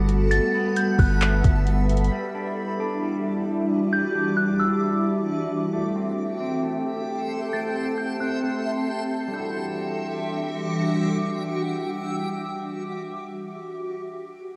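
Atmospheric cloud-rap hip hop in E minor, this hazy, ethereal 133 BPM passage moves at a half-time feel in 4/4 and is cut from a longer piece. A glassy FM pad holds sustained chords throughout, its full-bodied tone coloured by ensemble chorus, phaser, sidechain pumping and a low-pass filter, while a filter sweep runs until 9.3 seconds. Alongside it, an electric guitar at the edge of break-up plays twangy, fingered arpeggios through analog delay, and a reversed, granular texture rises dreamily through the haze. A deep sine 808-style bass and a smooth R&B drum kit of soft kick, metallic hi-hat and handclaps sound only until 2.1 seconds, and a delicate, tinkling synth tine bell carries the melody high above with chorus and delay from 0.3 to 10.6 seconds. The chords move from Gmaj9 to Em9, then Am7, and back to Em9 as a new section begins at 9.3 seconds, all set in light digital ambience with the soft grain of a home cassette recording.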